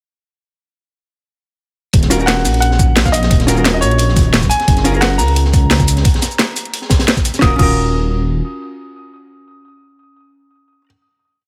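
Rolling two-step drums in a straight four-beat feel drive this lush, dreamy liquid drum and bass piece, with the drop arriving at 1.9 seconds. An up-front electronic kit with a cracking snare, bright hats, shaker and crash carries overdrive. It is layered over a thumpy, gritty sampler-style kick and a looped breakbeat in the background, whose high-tuned snare and hats are filtered and saturated. Beneath them, a deep detuned sawtooth bass rumbles and beats in long gliding notes. A clean hollow-body electric guitar plays syncopated rootless chord stabs through tape echo, while an intimate baby grand piano, brilliant and polished with audible action noise, states short call-like motifs, also echoed. The drums stop by 7.7 seconds for a final chord, and the guitar and piano carry on in a small, lightly reverberant room until 10.9 seconds.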